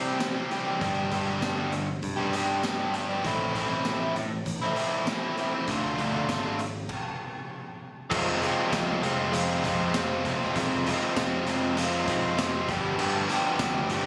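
This short indie rock excerpt sounds as though it was captured on a phone in the room, dry and compressed, with a jangly, wistful mood in a straight four-beat feel. A biting, overdriven electric guitar, picked and double-tracked, sits up front with a warm riff moving through C, G, Am and Dm. A raw garage drum kit follows at once: a punchy kick, a high-tuned snare, hi-hat, crash and tambourine sound gritty and saturated, with a rolled-off top and a pumping stone-room ambience. By 0.8 seconds a modern picked electric bass joins, bright, direct and punchy in the low register. A stop arrives at 6.9 seconds, then the music moves at 8.1 seconds into a darker passage on Fm that closes on a G5 chord.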